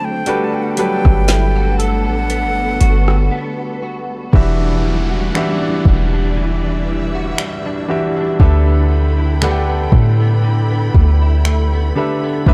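A smooth, up-front R&B drum kit of finger snaps, metallic hi-hat, soft kick, rim click and woody snare enters at 0.3 seconds over a deep, boomy 808-style bass that sounds from the very start, in this late-night, sensual contemporary R&B excerpt at 59 BPM with a light sixteenth-note swing. A breathy, close-miked flute carries a short, expressive melody with digital delay until 3.8 seconds, over clear grand piano accompaniment, lush bowed strings holding sustained chords, and background electric guitar arpeggios treated with chorus and delay. After a brief break, the chords move from Gmaj9 to Em9 and G69/D while a background downlifter enters at 4.4 seconds, all within a dark, dry production carrying a faint mains hum.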